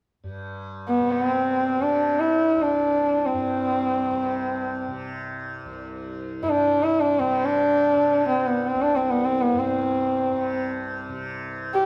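Indian classical music in free time, devotional and radiant, with a softly plucked, buzzing tanpura drone shimmering low beneath a dark, nasal, woody sarangi that enters at 0.9 seconds up front, its single bowed voice gliding with light vibrato, portamento and ringing sympathetic strings through a moderate recital hall reverb, tuned to A4 = 435 Hz in a brief cut from a longer piece.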